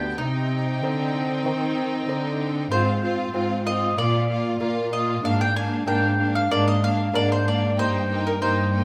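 Set on a scoring stage with moderate reverb, this short festive excerpt from a baroque-style concerto movement with solo episodes moves at a lively 95 BPM in a straight 4/4. An up-front, woody mandolin carries the main melody, its picked double strings ringing clearly above the ensemble. A chamber violin section also plays a melody line in a high, narrow register with a focused, rich tone and a smooth top. A second violin section plays an even, bowed second line beneath it. In the background, a delicate fingerpicked lute with gut strings and some octave-doubled courses supplies the accompaniment alongside a viola section with a vibrato-laden sound. A clear, bowed cello section sits up front as the bass, anchoring a progression that moves from Cm through Fm/Ab, Bb and Bb7/Ab to Eb/G across the 8.8 seconds.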